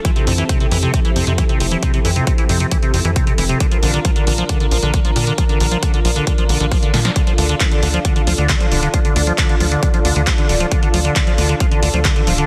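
A lush, detuned unison pad carries this euphoric uplifting trance excerpt at 135 BPM in D minor, holding slow-attack sawtooth chords with chorus and sidechain pumping while a filter sweep runs across it for the full 12.5 seconds. Beside it, an up-front liquid acid bass spins squelchy, resonant square-wave arpeggios, thickened with chorus and a digital delay and pumping in time with the beat. An electronic kick drum, layered and punchy, sits at the front of the mix. An analog drum machine adds handclaps, a punchy snare and hi-hats with pumping on the hats, all in a short room. From 0.3 seconds a tight sequencer bass drives underneath with plucky, decaying sawtooth and square-wave notes that stay mellow in tone. The harmony moves from Fmaj7 to Bb to Dm, a drum fill lands at 6.9 seconds, and the dense, heavily limited master with light reverb keeps the soaring mood bright and full.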